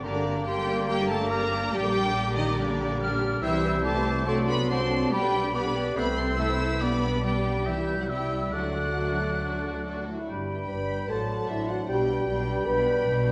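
The excerpt opens at once with a full symphony orchestra in a restless, dramatic G minor, a fast romantic movement in 4/4 moving at about 135-154 BPM before it turns to G major from 3.4 s. A lush, vibrato-rich violin section carries the melody up high, while a second, more expressive violin section, a small flute group with a pure tone and crisp attack, a distant solo oboe, and a mellow, roomy clarinet add second lines. Beneath them a dark, woody viola section and a soft-edged bassoon fill in the accompaniment, and a dark French horn section holds sustained chords in the background. Cellos and double basses anchor the bass with a smooth, even, full-bodied sound. At 10.3 s a bright, close-miked trombone section joins with sustained chords as the harmony settles on G, carrying on until the cut at 13.3 s. The whole orchestra sits in a moderate concert-hall reverb that lends the winds and horns a roomy depth.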